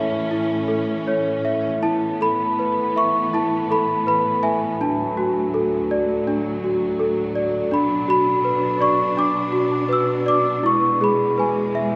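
A bell-like celesta carries the melody up front, its delicate, sweet tone touched by tape echo, while a lush symphonic string section holds smooth, bowed sustained chords with vibrato beneath it. This tender, sleepy children's lullaby in A major moves at 82 BPM in 4/4 with a rubato feel, the harmony passing from A through Asus2, D and Bm to E by 10.6 seconds. A cathedral reverb with a 5.2-second decay places this 12-second cut from a longer piece in a vast, echoing space.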